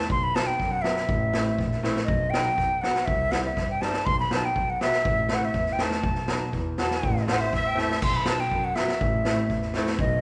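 Heard in a reverberant church or concert hall, this festive yet bittersweet klezmer fragment moves at 121 BPM in a straight 2/4, circling chords of B5, Am, B and C. An airy concert flute with vibrato and a crisp attack carries the melody up front, over a bowed, veiled double bass played con sordino with vibrato and portamento, and a street-band drum kit with a boomy kick, dark cymbals and a medium-tuned snare that plays fills at 3.6 and 7.5 seconds. A bright, woody upright piano with short sustain accompanies in the background, and a reedy, shimmering musette accordion adds a brief second line from 7.3 seconds.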